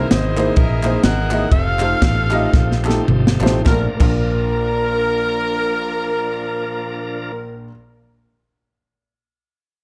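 Uptempo gospel in Bb major with a reverent, hopeful mood, swung in 4/4 at 100-133 BPM, slowing down over the opening bars as a drum fill from 2.5 s carries the C7alt and F9 changes home to Bb at 3.7 s. An edgy, close-miked saxophone section leads the melody up front with light vibrato, over a concert grand piano with audible action noise and deep bass, a shouting tonewheel organ holding chords through fast rotary speaker and overdrive, and a punchy, foam-muted fingered electric bass. A crisp, polished fusion drum kit and very quiet group handclaps drive the first half and drop out at 4.1 s, leaving the rest in a dark production with light reverb, cut from a longer piece.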